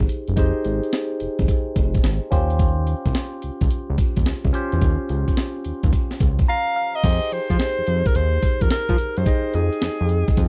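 A vibrato-laden, jazz-style alto saxophone solo enters up front at 6.5 seconds in this confident, slick new jack swing R&B excerpt in F minor at 108 BPM, riding over a gritty, compressed breakbeat sampler kit with a thumpy kick and high-tuned snare, a fat, detuned analog bass with a filter sweep, and a barky tine electric piano through a phaser and combo amp that plays a fill running into and through the break, all captured in a dry, close 1970s-style studio sound.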